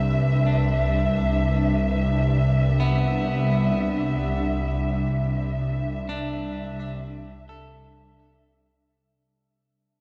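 An ethereal, airy pad sits up front in this reflective, melancholic ambient excerpt, its detuned, slow-attack chords blooming through ensemble chorus and its own built-in reverb as it fades in from the start. Beneath it, a bowed double bass section holds a low C with a clear, smooth tone and light vibrato. A symphonic violin section adds a lush, woody texture high above, softly attacked and warm with vibrato. From 0.5 seconds, a slightly broken-up electric guitar picks arpeggios that ring through tape echo, fading in alongside the pad. Set at a slow 64 BPM in 4/4 on a Cmaj9 chord, the whole passage is bathed in a wet cathedral reverb within a dark, warm production and begins to fade out at 3.9 seconds, an excerpt cut from a longer piece.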